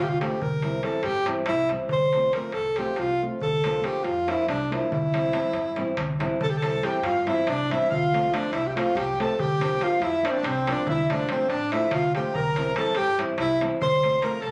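Set in a straight 7/8, this wild, exuberant Balkan wedding-band fragment puts a punchy, close-miked alto saxophone up front, singing the melody with classical-style vibrato over a thumb-plucked nylon-string guitar with finger squeak, a woody, thumpy pizzicato upright bass and a crisp, saturated metal-shell darbuka played with soft hands. At 6.4 s a reedy, sweet accordion with light tremolo tuning enters in the background with a second line. The sound is that of a phone recording in a small club room, with moderate reverb and compression.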